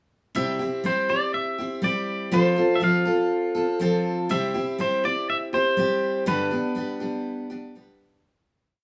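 Country in C major at 122 BPM, a heartfelt, down-home instrumental where a full-bodied picked steel-string acoustic guitar carries the accompaniment with folk strumming in open chord shapes, while a bright, clean, twangy electric guitar sits up front with a motif-based melody built from period phrases. The short piece moves through C, F, C and G, the electric entering at 0.4 seconds as the acoustic plays through to 8.3 seconds. Moderate studio reverb and small room ambience frame the duo, and a fade-out begins at 6.3 seconds.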